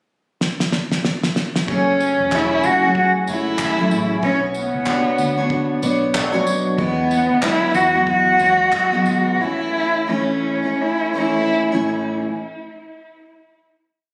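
A swung, loping 93 BPM groove in 4/4 opens with a cloth-damped drum fill of thuddy kick, fat snare, handclaps and tambourine, setting up an easy-going, sunny acoustic pop piece in A major. At 1.7 seconds a dark, woody bowed cello takes up a hook-based melody with vibrato, plate reverb and tape echo. Beneath it, a double-tracked, full-bodied steel-string acoustic guitar strums open chord shapes and a round, foam-muted fingered electric bass plays with slides, moving through F#madd9, Bmadd9 and Eadd9 before landing on A, as the tempo slows from 6.8 seconds to the close, with cello and guitar up front in a phone recording of the room under moderate studio reverb.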